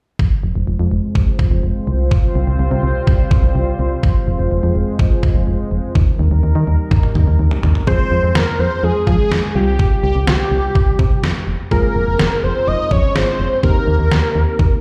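Nocturnal and driving, this synth-pop excerpt moves in a straight 4/4 over a looping minor progression that cycles through a suspended chord and a sixth chord. A thumpy, tape-coloured 8-bit drum machine with kick, medium-tuned snare and toms sits up front beside a punchy, round FM bass with a fast, decaying attack, and both carry the whole passage. At first a sweeping, detuned sawtooth pad holds sustained chords with a slow filter swell and chorus, and a drum fill at 6.9 seconds leads into the second section. At 7.9 seconds the pad drops out and a thick, bold unison lead takes the melody, its sawtooth, triangle and sub-octave layers carrying vibrato, a moving notch and delay. Beneath it, a soft, dark FM electric piano with a noise layer, chorus and phaser adds background accompaniment, and the mix sits in light digital reverb with a large, bare-room ambience.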